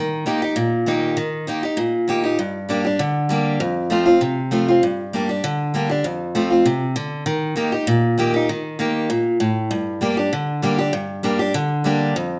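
A straight four-four feel carries this haunting, rustic bluegrass fragment, cut from a longer piece, where a lone picked steel-string acoustic guitar sits up front with a bright, boxy tone, moving through Eb, G minor and F chords for its full 12.4 seconds inside a wet, large studio reverb.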